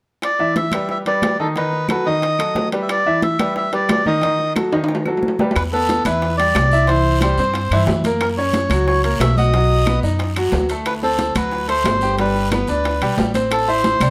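Fiery and danceable, this salsa excerpt opens with a reedy, nasal melodica carrying the tune up front, over a bright upright piano whose present accompaniment shows audible action noise and long sustain. Farther back sits a percussion bed of damped, high-tuned congas, round, low-tuned bongos played with soft hands, ringing metal-shell timbales and dry, woody claves in a straight 4/4 feel. A drum fill at 4.7 seconds leads into the second section at 5.6 seconds. There, a dark, thumpy pizzicato upright bass with gut strings joins up front alongside a raspy guiro. The harmony alternates between Em7 and B7 before moving through C, F#, B, D7, G and Am7, all held in moderate studio reverb.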